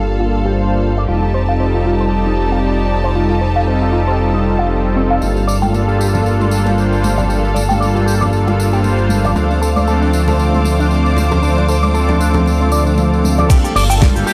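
Sleek and cosmic, this nu-disco excerpt in G minor moves at 116 BPM with a light 16th-note swing, as a smooth detuned analog pad with chorus, sidechain pumping and tape echo rides over lush, distant bowed strings and an up-front, glossy synth bass with tube saturation, while a twangy envelope-filtered electric guitar riff sits in the background over chords that shift from Gm9 through F9 and Dm7, ringing tambourine and soft-handed congas join at 5.2 s, and a dry 70s kit with a fat snare arrives with a thumpy electronic kick at 13.5 s.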